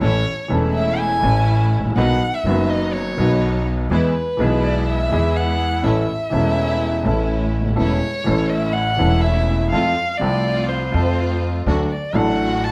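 A dark, expressive bowed violin with vibrato and portamento sings up front from the very start of this passionate, sultry tango cut at 124 BPM in A major with a rubato feel, over a clear, worn concert grand piano with deep bass and short sustain, woody pizzicato upright bass, and distant, lush stabs from a rich studio string section, all held in a moderate large studio reverb across its 12.7 seconds.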